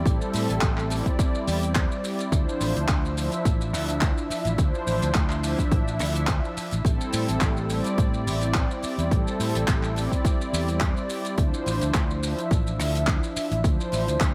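An overdriven, punchy electronic kick leads this sleek, cosmic nu-disco excerpt, layered with a dry acoustic funk kit of handclaps, hi-hat and shaker that carries a light swing on the sixteenths. A warm, amped fingered electric bass anchors the low end while a mellow, detuned sawtooth pad with soft attack and long release sits up front, moving between Am7 and Dm9 through chorus, digital delay and sidechain pumping. Light reverb and studio ambience frame the sound.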